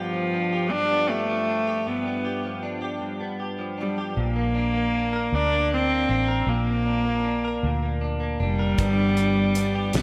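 A slow, swaying six-eight pulse at 52 BPM, counted in dotted quarters, carries this romantic pop ballad in Bb major, tuned to A4 = 444 Hz. A single bowed cello sings the melody up front from the opening, its rich, reedy gut-string tone played in a period style. Beneath it, a clean, compressed electric guitar, recorded direct and double-tracked, plays the accompaniment. At 4.2 seconds the harmony moves from G7 to Bb, and a vintage fingered bass joins with a dark, round, punchy, foam-muted sound, amped and placed up front. At 8.8 seconds the chords return to G7 as a dry, damped 70s drum kit arrives with a fat snare, tight kick and hi-hat under gated reverb. At the same moment, a picked steel-string acoustic guitar adds delayed arpeggios from an auditorium-like distance in the background, all within a wet plate reverb and bright 1980s-style digital production on this cut from a longer piece.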